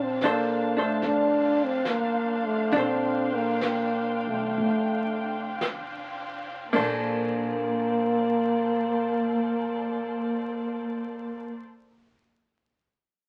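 Romantic and late-night, this swung jazz ballad fragment, slowing through its first 6.7 seconds, sets a breathy, whispered trombone melody up front over veiled, con sordino strings, a woody pizzicato upright bass, a clean, compressed hollow-body electric guitar and a brushed drum kit with dark cymbals that drops out at 7.7 seconds, all in a small room with the crackle of a very old 78 rpm record.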